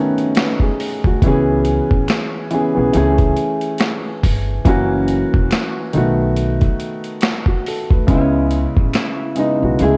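Lo-fi hip hop at a slow, swung 70 BPM in C# minor, hazy and nostalgic and cut from a longer piece: a dark, mellow upright piano sits up front behind a low-pass filter, moving through B7, C#m7, Amaj7/C# and F#7, while a compressed, pitched-down boom bap kit with a thumpy kick and high-tuned snare carries 12-bit sampler grit and very quiet, close finger snaps tick along. A woody pizzicato upright bass enters at 1.0 seconds, and at 8.1 seconds a small, bright, fingerpicked nylon-string guitar slips in from the background with a filtered melody. The recording is wrapped in light reverb and the warbly pitch drift of worn cassette tape.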